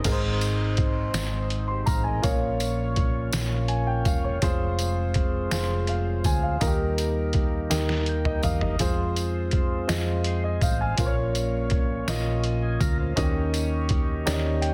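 A dry, dense and heavily limited mix frames this jubilant, uplifting slow gospel piece in 6/8 at 55 BPM in Ab major, cut from a longer performance. Gritty, pitched-down sampler-style drums with a thumpy kick and a soft-clipped snare sit up front beside a natural grand piano, while a round, dark hollow-body bass enters at 0.1 seconds. A lightly overdriven tonewheel organ with key click and a slow rotary speaker holds sustained chords, a close, jingly tambourine shimmers underneath, and the drums and organ share a fill at 7.7 seconds as the chords move from Ab through Bbm and Fm to a closing Eb7.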